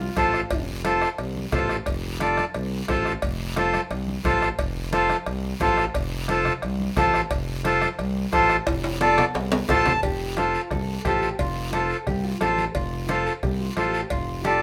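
Sunny, festive cumbia with a reedy, up-front accordion accompaniment over a smooth, gliding synth bass with vibrato, soft-handed congas in the background, a close bombo, ringing cowbell and timbales, and raspy guiro, all in moderate studio reverb, with a drum fill and a brief accordion fill leading into a new section at 10.0 seconds, where a dark, clean, fingered electric guitar returns for a mellow second line.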